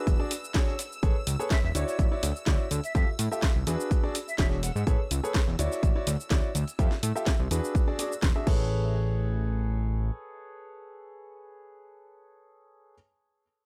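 A clear, intimate concert grand piano carries a tape-echoed riff through this euphoric, uplifting piano house excerpt, its boxy tone and audible action noise sitting over a fat, detuned sawtooth bass that pumps with the sidechain and a punchy electronic kick. Shimmering vintage string-machine violins hold chorused chords in the background. A layered house kit adds cabasa, crash and a cracking snare, while a very quiet, gritty breakbeat kit sits underneath. An airy, distant flute floats a brief echoed melody from 1.5 to 4.8 seconds over rich extended chords. The drums and strings drop away around 8.6 seconds, and the piano runs on alone by 10.1 seconds in a dry mix.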